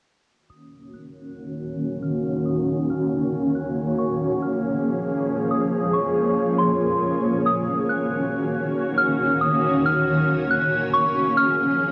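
A home-cassette sound with a moderate spring reverb and digital ambience wraps this ethereal, spacious fragment of half-time hip hop at 138 BPM, with a filter sweep running through from 0.3 s. A soft, pure FM synth bell carries the high melody from 0.5 s, its mellow, decaying tones colored by chorus, analog delay, tape character and a low-pass filter. At 1.3 s a cloudy, evolving granular pad sits up front, holding blurred, full-bodied detuned chords that alternate between Ebm7 and Bbm7.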